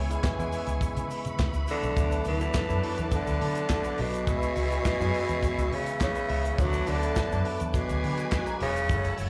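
Heard through a club's PA with light reverb, this short excerpt of glamorous, sultry disco moves at 104 BPM in a straight 4/4, cycling between C#m7 and D6. A punchy, foam-muted fingered electric bass sits up front with a round, dark tone, anchored by a dry, mid-forward soul drum kit with a tight kick, medium-tuned snare, hi-hat and handclaps, while a grainy egg shaker ticks along in the background. A barky tine electric piano, lightly overdriven through a combo amp with slapback echo, carries the accompaniment alongside a very quiet, clean electric guitar. Behind them, a bowed studio string section adds expressive vibrato and portamento, and a tonewheel organ holds sustained chords with key click, chorus vibrato and a slow rotary speaker. At 1.7 seconds a raspy, growling tenor saxophone enters up front, close-miked and gritty, taking the melody in a low register with slapback echo.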